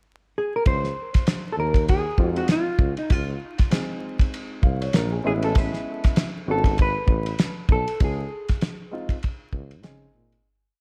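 Jazz-hop at 98 BPM in Db major, smooth and relaxed, with a swung 16th-note feel and a dark, warm production flecked with vinyl crackle, a faint mains hum and light reverb. A clean, fingered hollow-body jazz guitar opens the piece at 0.4 seconds with a pickup into a free, meandering melody, its dark electric tone sitting up front and trailed by analog delay. A cloth-damped, thuddy acoustic drum kit arrives at 0.7 seconds with a boom-bap beat under a swung ride cymbal, its fat snare, tight kick and dark cymbals sounding warm, close and rolled-off at the top in a small room. Alongside it, a tuba carries a syncopated, jazz-style bass line with slides and a smooth top, while a mellow, woody upright piano joins at 2.2 seconds with free rootless comping, long sustain and short fills. The harmony drifts from Dbmaj9 to Amaj9 and settles on Dbmaj7sus2 as the whole piece fades out from 8.0 seconds.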